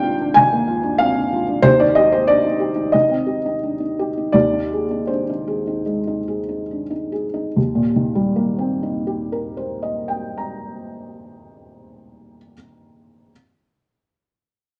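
A wet studio reverb with a short 0.8-second decay surrounds an intimate, close-up piano sound in this short cut from a longer piece of neoclassical minimalist piano music. The only instrument is a felt-muted upright piano, playing solo throughout and sitting up front, its thick felt giving the notes a dark, mellow tone with short sustain. The mood is peaceful and hopeful, in Eb major with the tuning set at A4 = 442 Hz, and the 4/4 pulse moves with a rubato feel somewhere between 68 and 97 BPM. The opening passage gradually slows from 0.4 to 7.6 seconds, moving over an Eb bass through Bb/Eb, Cm/Eb and Ab/Eb chords. At 7.6 seconds a new passage begins on an Eb6 chord, and the piano, which spans Eb2 up to Bb5 across the whole excerpt, stops at 13.3 seconds.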